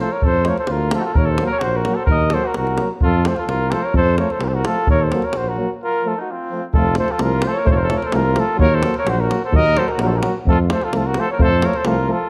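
A straight 2/4 pulse at 129 BPM drives this restless, bittersweet passage of Balkan brass band folk in F phrygian dominant, cut from a longer piece. A tight, close and dry davul sets the beat from 0.2 seconds, beneath a mellow tuba bass with a smooth top that sits up front. The flugelhorn carries the melody with light vibrato in a classical style, while a vintage-toned, band-limited trumpet plays a second line. Two euphoniums fill out the accompaniment in the background: one clear, soft in attack and distant, the other warm with light vibrato. The harmony moves between F and E-flat minor, with a brief break from 5.8 to 6.7 seconds before the same section repeats. A moderate recital hall reverb gives the ensemble a roomy, natural space.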